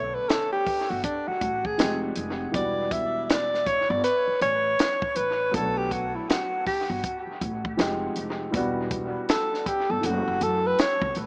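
This short excerpt has an echo-heavy, small-speaker sound bathed in a moderate spring reverb, and it carries a smoky, nocturnal mood. It is a jazz-hop groove in the hip hop vein at 80 BPM in 4/4, with a swung sixteenth-note feel in B minor, and the chords move from Bm7 through Fm9 and Em9 before landing on F#m7. An alto saxophone carries the melody as a solo from the start until 11.2 seconds, close-miked and up front, with a warm tone, jazz phrasing, vibrato and a dub echo trailing its lines. Beneath it, a dark upright piano plays mellow, intimate accompaniment with short sustain, audible action noise and a vintage character, also treated with dub echo. The upright bass is plucked on steel strings with a thumpy, woody tone. A compact cocktail drum kit enters at 0.3 seconds with hi-hat, a punchy kick and a high-tuned snare, dry and up front apart from its own dub echo.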